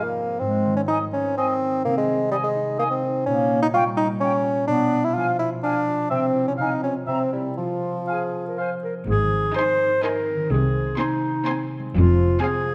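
Heard first at 0.0 s, a warm up-front bassoon, a ringing fingerpicked concert harp and a mellow, vintage-toned cor anglais open this mischievous, magical cinematic passage in F minor at 126 BPM in 3/4, soon joined by a soft-attack clarinet up front and a pure, bright flute section in the background, before the music turns to Ab major at 9.1 s, where a focused, distant cello section and a smooth double bass section take the bass line, soon beneath a lush, expressive violin melody, a second violin line further back and an intense viola section arriving at 9.6 s, all set in a moderate scoring-stage reverb.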